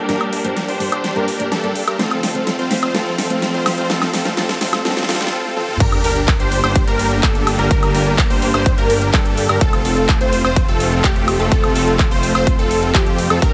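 Festival progressive house at 126 BPM, anthemic and powerful, this cut from a longer piece builds over Gm and F chords. Huge, detuned supersaw chords carry the riff up front with dub echo and sidechain pumping, over a fat, nasal analog bass, close bowed strings and a dark, clean electric guitar with spring reverb that drops out at 5.2 seconds, while a very quiet riser and sub drop sit beneath a big-room kit of huge snare, metallic hats, claps, toms, woodblock and crash. At the drop at 5.8 seconds an overdriven, punchy electronic kick enters alongside a catchy plucky unison lead playing arpeggios with ensemble chorus and vibrato, all under light reverb.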